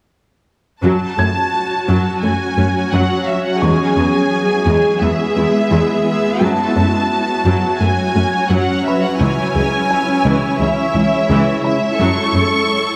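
In a straight, steady 4/4, this tense, futuristic cinematic passage, cut from a longer piece, opens with lush bowed strings and a soft, round synth pluck: a vibrato-laden violin section carries the melody up front, a smooth viola section supplies the accompaniment, a rich cello section holds the bass, and the pluck, with chorus and tape echo, ripples through background arpeggios. A dark, felt-muted upright piano with tape echo adds intimate texture from 1.2 s, and a shimmering, ethereal pad with chorus and built-in reverb joins at 1.6 s with slowly evolving sustained chords, all set in a reverberant recital hall as the harmony moves between F#m, E and C#m.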